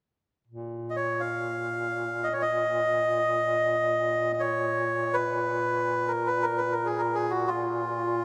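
Caucasian folk lament in free time and B-flat Phrygian, mournful and longing: a duduk with vibrato sustains a low drone from 0.5 s. From 0.9 s an up-front, reedy, breathy melodica sings a dark, smooth melody between F4 and F5, all carried by a long, wet cathedral reverb in this short excerpt of a longer piece.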